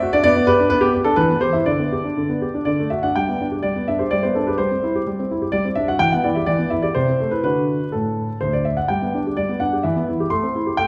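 In a 3/4 at 126 BPM, played with a free rubato, this graceful and playful classical-period sonatina in G major unfolds on a solo concert grand piano, cut from a longer piece. The instrument has an intimate, natural tone with a deep bass, and the clatter of its action is audible beneath the notes. Its range stretches from D2 up to C6, and the harmony moves through simple, clear progressions built on G, E minor, C and D chords, closing on an A minor seventh. An opening phrase gives way at 3.2 seconds to a contrasting passage that carries the piece through to 10.9 seconds. The piano sits up front in the mix, while the listener seems placed further back in a recital hall whose wet, lingering reverb gives each phrase a glowing tail.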